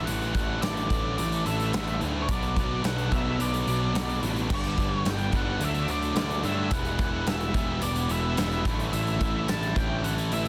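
Bittersweet and cathartic, this 108 BPM quiet-loud alternative rock excerpt sets a dark, fuzzed octave lead guitar melody over bright high-gain and overdriven guitar riffs, a warm double-tracked overdriven guitar tucked very low, a growly fuzz bass up front and a punchy, big-room arena drum kit entering at 0.1 seconds, moving through Asus4, Bm, G, D and Em in a dense, heavily limited mix with light reverb.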